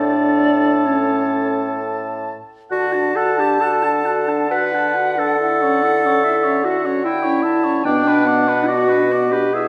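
Swaying in a flexible triple metre with generous rubato, this slow romantic movement for wind quintet carries a tender, warm mood and is cut from a longer piece. A silver concert flute sings the melody with a pure, metallic tone, expressive vibrato and crisp attacks, set somewhat distant in the blend, while a mellow oboe with light vibrato traces a second line beneath it. The clarinet, clear and up front, is the most prominent voice in the accompaniment. It is joined by a French horn whose soft attacks and light vibrato lend a rounded glow, and by a bassoon of similar clarity that anchors the bass. All five instruments play together from start to finish as the harmony moves from A to D at 2.7 seconds, then to A over D and finally B minor, with a reverberant recital hall giving the ensemble a lingering bloom.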